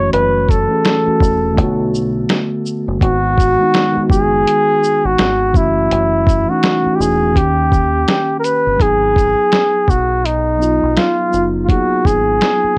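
A smooth, jazz-style flugelhorn leads this reflective, nostalgic lo-fi hip hop fragment, carrying the solo melody up front with light vibrato and a warm tone, softened by a low-pass filter and cassette tape coloring. Beneath it, a mellow tine electric piano plays clean chords through its built-in speakers, also filtered and tape-worn, while a deep, round dub bass, played with the fingers, adds a dark, punchy low end. From 0.1 s a compressed, pitched-down sampler-style drum kit sits up front with a thumpy kick, medium-tuned snare, hi-hat and shaker, its muffled sound riding a swung sixteenth-note feel. The harmony moves through minor seventh chords and a dominant seventh before the mode shifts at 8.8 s, settling on a G#m7 chord. Light reverb and the character of a home cassette recording give the whole piece an intimate, faded quality, and the passage is cut from a longer piece.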